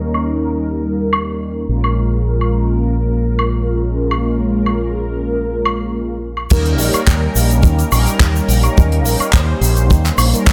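Nu-disco excerpt at 106 BPM in 4/4, with a light swing on the sixteenths and a groovy, sleek mood, moving between Eb7 and Bbm7. A round, detuned sawtooth synth brass sits up front with chorus, phaser, delay and vibrato, while a bright fingered electric bass with an envelope filter and a dry, airy funk kit of hi-hat, shaker, woodblock, handclaps and crash cymbal drive the groove. At 6.5 s the drop brings in a tight acoustic kick with a rolled-off top, all set in a dreamy, reverb-soaked hall with a low-pass filter over the mix.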